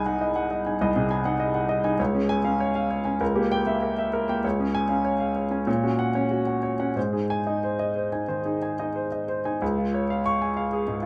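Brilliant and sparkling, this short cut from a longer classical piece is a virtuoso piano study in Db major, moving in 4/4 at 88-102 BPM with a free, rubato feel. A clear grand piano plays solo from C2 up to Db6, sitting up front and intimate, its long sustain and audible action noise caught in a moderate studio ambience. The harmony passes from Ab7/C through Db, Dbdim7 and Gb/Bb to Ab before a new section settles on Db at 9.6 seconds.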